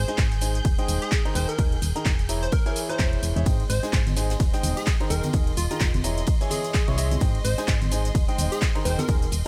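A clear, intimate grand piano with audible action noise drives this joyful, euphoric piano house excerpt in Ab major at 128 BPM with a swung 16th feel, riding over a punchy, round FM bass, a tape-warm electronic kick up front, a layered house kit with metallic hats, cabasa, handclaps and ride, a very quiet, dry reggae kit with a high-tuned snare, a catchy square-wave unison lead with dub echo, a rich, biting symphonic string section pumping in the background, and distant tambourine and congas that join at 3.5 seconds, all moving through Abmaj7, Ebsus4 and Dbm/Fb.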